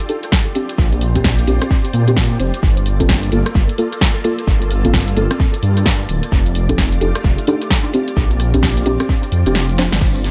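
A soft string machine and a house drum kit open this late-night UK garage excerpt together. The silky, vintage strings hold sustained chords under ensemble chorus and sidechain pumping, while the kit's punchy snare, bright hats, congas, rim click, shaker and crash sit up front with dub echo. At 130 BPM in 4/4 with a skippy two-step swing on the sixteenths, a deep, mellow chord stab carries a filter sweep throughout, its warbling, detuned tone treated with chorus and dub echo. A layered electronic kick and a dark saw bass drive the low end, the bass rumbling and saturated under sidechain pumping, as the harmony moves through F13, Bb69 and Gm7 before returning to F13 and Bb69. Near the close the kick drops out at 9.6 seconds and a drum fill lands at 9.8 seconds, set in light reverb and digital ambience within an echo-heavy mix.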